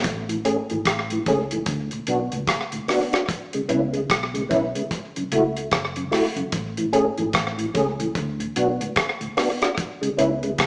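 A roots reggae groove at 74 BPM in 4/4, swung on the sixteenths, drives this sunny, uplifting excerpt in A major, with a deep acoustic kit of tight kick, hi-hat and rim click sitting up front under a slapback echo. Beneath it, a vintage foam-muted fingered electric bass adds a dark, amped, round low end, while a mellow, clean tonewheel organ, shimmering with chorus vibrato and a slow rotary speaker, carries the chords from Amaj7 through D6, C#m7 and F#m7. The band sounds as if it is playing live in one room, bathed in a large studio reverb yet heard through a small speaker.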